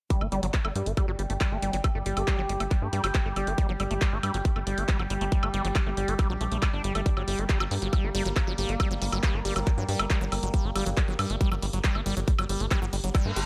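Hypnotic and psychedelic, this psychedelic trance excerpt in G harmonic minor drives at 138 BPM in a straight 4/4, with a tight, up-front electronic kick and a layered dance kit of handclaps, hi-hat and woodblock under a punchy sequencer bass of mellow, decaying filter plucks. A squelchy, resonant acid bass riff runs through phaser and tape echo, while a slow-attack drone holds sustained chords with moving overtones, chorus and built-in reverb, both of them pumping with sidechain compression. A reverse cymbal at 13.2 seconds closes the passage in light digital ambience.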